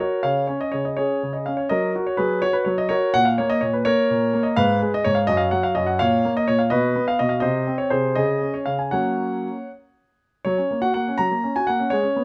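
This classical-period piano sonatina in F# major moves at 83 BPM in 6/8, counted in dotted quarters, with a rubato feel that lets the time bend freely. The mood is elegant yet restless, and this short passage is taken from a longer piece. A solo grand piano carries everything, spanning F#2 to A#5 with a warm, polished tone, long sustain and a present, up-front place in a lightly reverberant space. The harmony settles on C#5 and F# early on, then drifts through moments of open, unharmonized writing, passing through Fdim/Ab, A#madd11 and Cm before returning to C#5 and F# at around 8.2 and 8.9 seconds. At 10.5 seconds a new section begins, carrying the piece onward until the cut at 12.2 seconds.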